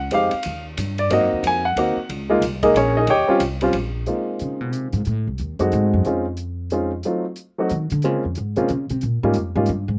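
A brisk swing in 3/4 at 182 BPM drives this jazz piano trio in Ab major, giving the short cut from a longer piece a warm, playful lilt. The grand piano carries the melody with a present, polished tone and short sustain, sitting up front, while the upright bass, plucked on steel strings, sounds woody and thumpy and also sits up front. Quietly behind them, the acoustic drum kit keeps time on hi-hat, ride and kick, its cymbals dark and its kick boomy, with a rolled-off top that keeps it smooth. The piano takes the first solo until 4.1 seconds, and the bass steps forward with its own solo from there to the end. The harmony moves through rich extended chords such as Ab9, Eb13, Ab7b9 and a rootless F7b9, and the dry open-air sound, carrying little reverb, keeps every part close and clear.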